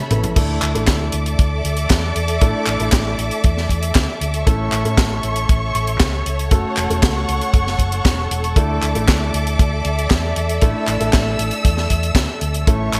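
A brief drum fill on the tight funk kit opens this romantic, playful italo disco excerpt before a dry, tight kick enters at 0.4 seconds, driving a straight groove with bright cymbals, handclaps and a high-tuned snare wrapped in gated reverb. Lush, bowed symphonic strings hold sustained chords from Dsus2 through A and F#m, while a round, amped hollow-body electric bass anchors the low end and a dark, mellow baby grand adds intimate stabs through digital delay. The bright 1980s-style digital production sits in a moderate plate reverb.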